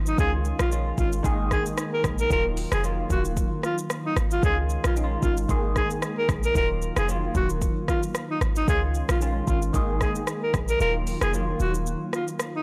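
Afrobeats excerpt with a breezy, sunny lilt, where a breathy, whispered alto saxophone carries the melody up front over a bell-like tine electric piano with phaser, a punchy, short 808-style bass and an electronic afro-pop drum kit of deep kick, metallic hats, rim click, shaker and a softly clipped snare, all cycling through Dbadd9, Absus2 and Ebmadd9 in a dry, blown-out, overdriven mix until the kick drops out at 10.8 seconds.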